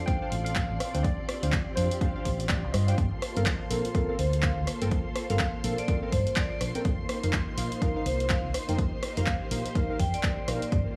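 A clean tine electric piano melody with analog delay opens this moody, late-night deep house excerpt at 124 BPM, over silky string-machine chords carrying vintage 12-bit sampler grit and a faint, detuned analog string pad, both pumping to the sidechain; an overdriven, punchy kick, a dry analog drum machine with handclaps, hi-hat and rim click, a round, hollow-body fingered bass with tube saturation, and nasal, decaying chord stabs with chorus and delay settle into a swung 4/4 groove as the harmony moves from Dm7 to Gm11 and F7sus4, and at 4.2 seconds a ringing, metallic vibraphone takes up the melody in an echo-heavy small room.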